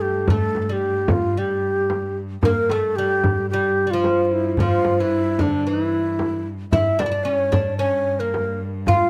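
A breathy, mellow ney carries the melody up front in this longing, hypnotic Arabic maqam ensemble excerpt in G maqam nikriz at 112 BPM in a straight 4/4, with a bright, woody fretless oud plucking a second line beneath it, a rich bowed cello holding a vibrato drone on G2, a crisp, deep metal-shelled darbuka sitting in the background, and a soft-handed frame drum joining at 0.3 seconds, the room captured through close, detailed microphones with light reverb.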